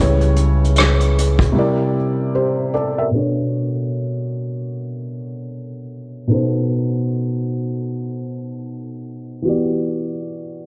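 A soft, mellow felt-muted upright piano opens this melancholic, nostalgic lo-fi hip hop piece at 76 BPM with swung 16ths alongside a woody, dark pizzicato upright bass, joined briefly by a punchy vintage brush kit of hi-hat, kick and rim click, both bass and kit gone by 1.6 seconds for a break that leaves the intimate, thick-felt piano alone to carry chords from C#m7b5 and C9 through Bm7 and B7b9 to Em7 under a filter sweep from 3.1 seconds, all set in a dreamy, low-pass-filtered mix soaked in lush hall reverb.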